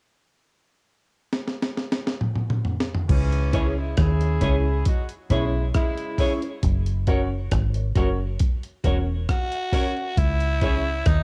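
Meditative and laid-back, this roots reggae fragment in C# dorian sits at 68 BPM in 4/4, opening with a drum fill on a compressed, gritty sampler-style breakbeat kit with a thumpy kick, before a round, foam-muted dub bass enters up front at 3.1 seconds. A mellow, distant horn section with tape echo, clean picked electric guitar with spring reverb, and woody, slightly detuned upright piano stabs fill out the C#m and F# harmony, while a raspy, growling tenor saxophone with vibrato takes the melody from 9.3 seconds. The sound is that of a home cassette recording with light reverb.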